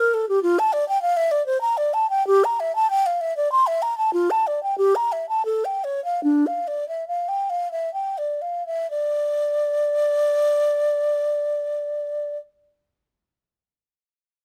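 Closely recorded and nearly dry, the sound puts a mellow, airy wooden baroque flute up front, its tongued notes and vibrato caught in fine detail. This introspective, solemn classical fantasia for unaccompanied flute moves in a free, rubato three-beat metre, slowing between 3.2 and 8.9 seconds before a new section begins. The flute ranges from D4 to C6 and falls silent at 12.4 seconds in this passage cut from a longer piece.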